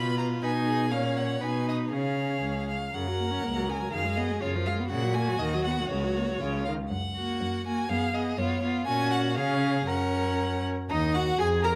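In a brisk 2/4 with a flexible, rubato push and pull, this quick classical-period movement for string quartet feels urgent and stormy, a passage cut from a longer piece. Two clear violins carry the top: the first, placed up front yet with a slightly distant quality, sings the melody high in its range, while the second traces a lower supporting line beneath it. A rich viola fills in the accompaniment with a smooth upper edge, and the cello, also up front, anchors the bass. All four players bow with vibrato and a focused tone. The harmony circles its home chord and its dominant, shifts into a new section at 3.0 s, and lands on a minor chord at 10.9 s. Close, detailed microphones catch the playing inside a moderate recital hall reverb.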